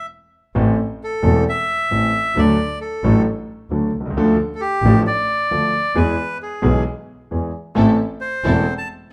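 A reedy, airy bandoneon opens alone in a brief stop before a bowed, earthy double bass joins it at 0.5 seconds and a deep-bassed concert grand piano follows at 0.6 seconds, carrying this passionate, sultry tango excerpt in A minor at 133 BPM with a rubato feel through Am, D, Dm and E. The bandoneon and piano sit up front while the bass, played by a single player with light vibrato, sounds more distant, all framed by a moderate large studio reverb. At 7.8 seconds a dark, intimate string section adds soft-attack sul tasto stabs with a smooth top as the harmony returns to Am.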